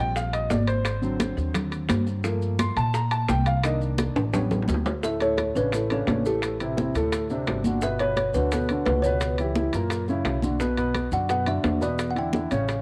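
This sophisticated, danceable Afro-Cuban jazz excerpt opens with a baby grand piano and a pizzicato upright bass, both up front. The piano takes a natural, warm-toned solo over lush extended chords, while congas, bongos, timbales and maracas join within the first fraction of a second. At a brisk 172 BPM in straight 4/4, the percussion forms an acoustic bed of tight, high-tuned bongos, ringing metal-shelled timbales and thin-skinned congas struck with hard hands in the background. Grainy, saturated maracas sit quieter still. A drum fill from 4.2 to 5.0 seconds leads into the next section, where the music settles into D major and a kalimba enters at 5.0 seconds with a short, thumbnail-plucked melody from its solid board, colored by a cassette-tape character and placed mid-forward beside the woody bass. Light reverb and small-room ambience give the whole piece the intimate feel of a home cassette recording.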